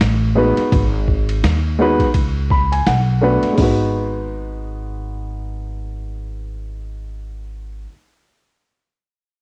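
A dark, mellow grand piano, muffled by a low-pass filter, provides the accompaniment in this nocturnal, smoky jazz-hop excerpt in G# minor at 84 BPM with a lazy 16th-note swing. It comes in at 0.4 seconds and plays a fill from 2.2 seconds over chords that drift between B7/A, G#m7 and Bm7. Beneath it, a woody pizzicato upright bass with tube saturation sits up front, while a gritty, pitched-down sampler-style boom bap kit with a thumpy kick, medium-tuned snare, hi-hat and ride carries a cassette-tape grain until it drops out at 3.8 seconds. Light digital reverb and a home-cassette recording lend the whole piece a hazy, lo-fi intimacy.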